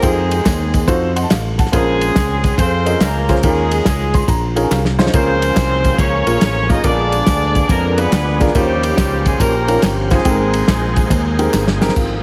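Jubilant and uplifting, this uptempo gospel excerpt moves at 141 BPM in 4/4 with a swung eighth-note feel, set in Ab major. An up-front horn section carries the melody with punchy, vintage vibrato and octave doubling, while a woody upright piano supplies polished, short-sustained accompaniment and drops in fills between 0.9 and 1.7 seconds and again around 3.9 seconds. Underneath, a growly fingered electric bass and a dry, muffled soul drum kit with a tight kick and rolled-off top drive the groove, the drums adding fills near 4.7 seconds and at the close, with tambourine, tube shaker and group handclaps sitting close in the background. At 5.1 seconds a shouting tonewheel organ enters with sustained chords, lightly overdriven, with key click, chorus vibrato and a slow rotary speaker. The harmony travels through rich chords such as Fm9, Bbm9, Db6 and Eb13 before resolving to Abmaj9, all framed by light reverb and a heavily compressed, radio-like sound.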